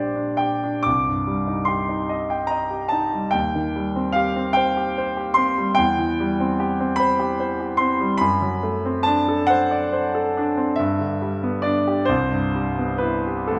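Dreamy and tender, this romantic classical nocturne for solo piano drifts in a rubato 6/8 lilt, its clear concert grand sitting up front with a deep, open bass, ranging from Bb1 to D6 and bathed in a wet recital hall reverb across this short passage cut from a longer piece.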